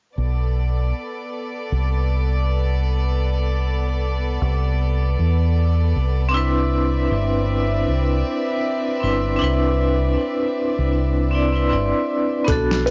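Cinematic and smoky, this trip hop passage moves at 78 BPM in 4/4 with a swung sixteenth feel, set in B phrygian and cut from a longer piece. A studio violin section holds sustained chords from 0.2 seconds, its bowed sul tasto tone soft in attack, pure and floating beneath a smooth top, carrying cassette tape coloring, while a deep dub fingered electric bass sits up front, round, dark and punchy, over a move from Bm7 to Cmaj9. At 6.3 seconds a vibraphone struck with hard mallets joins as accompaniment, metallic, ringing and bright, with tremolo, tape echo and cassette treatment. In the final moments, at 12.5 seconds, a felt-muted upright piano steps in with a brief melody, mellow and intimate, its thick felt and audible action noise roughened by vintage 12-bit sampler grit, alongside a dusty soul sampler-style drum kit with a thumpy kick, fat snare and hi-hat, compressed and re-recorded in a large room. 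The whole piece has the hazy, muffled character of a home cassette recording, with its highs rolled off above 7.5 kHz and a light reverb around it.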